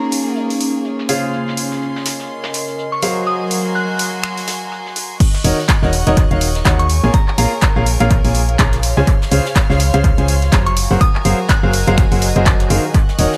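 A swung 124 BPM piano house groove in 4/4 opens with a tape-warm analog drum machine's hi-hat, handclaps, finger snaps and crash under a very quiet brushed kit, while a clear, vintage grand piano riff, earthy chamber violins holding bright sustained chords and a nostalgic, lo-fi pad breathe with sidechain pumping over bittersweet Bbm7, Dbmaj7 and Gbmaj9#11 harmony. A glassy, crystalline synth bell carries the melody through chorus, tremolo and analog delay until 12.0 seconds. At the 5.2-second drop a punchy kick lands up front and a round, dark FM bass joins at 5.4 seconds, pushing this energetic, echo-heavy fragment into its fuller section over an Ebm7 turn.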